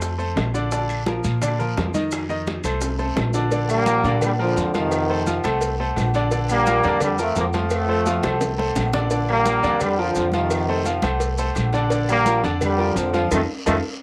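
A brilliant grand piano with a cassette-tape tint opens this joyful, danceable salsa excerpt alongside a thumpy, woody pizzicato upright bass up front, while round, low-tuned bongos and cowbell, damped thin-skinned congas and a raspy vintage guiro sit behind them, with grainy, saturated maracas in the mix as well. Ringing metal-shelled timbales and agogo bells and faint, distant claves join at 0.4 seconds, and drum fills punctuate the groove. A punchy trombone section, also carrying cassette color, takes the melody at 3.7 seconds over a home-recorded sound with light reverb, and the band hits an accent at 13.3 seconds before the cut.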